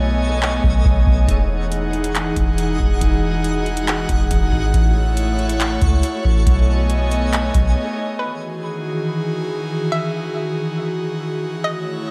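Light reverb and a digital ambience frame this floating, blissful excerpt of atmospheric cloud-rap in E major, moving at 139 BPM with a half-time feel. A breathy, detuned pad sustains chords with chorus and sidechain pumping, while a round, dark 808-style bass sits beneath, a sparkling granular shimmer with its own reverb glints above, and a booming, tape-tinged analog drum machine enters at 0.4 s with a deep kick, metallic hats and handclaps. After the bass stops at 7.8 s, a hollow, nasal square pluck carries the melody from 8.2 s, coated in chorus and diffuse ambient delay.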